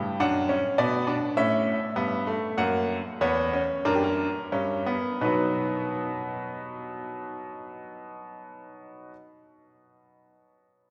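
Serious and solemn, this fragment of a baroque-style three-part fugue for solo baby grand piano moves at a stately 42-52 BPM in 4/4, easing back in tempo through its opening passage until a new passage begins at 5.2 seconds. The piano sounds brilliant and up front, with a long sustain across a range from E2 to G5, and plays until 9.1 seconds. The harmony moves from Bm/F# through F#7 to a B chord, all bathed in the deep, wet reverb of a cathedral-like hall.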